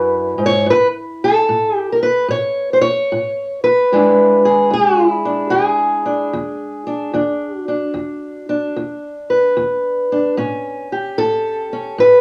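A home cassette recording in a small, damp-sounding booth frames this gritty, swaggering excerpt of acoustic country blues, set at 74 BPM in 4/4 with a swung eighth-note feel in E mixolydian. A lone fingerpicked steel-string parlour guitar sits up front, dark and boxy with a cassette-tape grain, ranging from low E2 up to C#5. It moves from an E7 through a chordless stretch back to E7 at 3.9 seconds, then turns to A7 at 10.4 seconds before the clip ends at 12.2 seconds.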